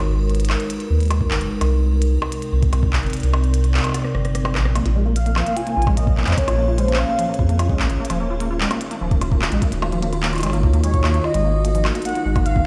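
This cerebral, glitchy IDM excerpt in Bb minor at 148 BPM opens on an icy, crystalline pad of sustained chords, with chorus and its own reverb, over a round sine sub bass that sits up front. Overdriven glitchy drums bring clicky hats, cabasa, handclaps, rim clicks and percussion blips through digital delay, and a soft, overdriven electronic kick joins them before dropping out from 3.1 to 4.8 s around a drum fill. From 4.8 s a rubbery, resonant square-wave acid bass plays arpeggios through lush chorus and delay, and from 5.2 s a velvety sawtooth lead with vibrato and a cassette-tape tint carries the melody in two phrases, the mix heard on a big sound system in a bare stone room.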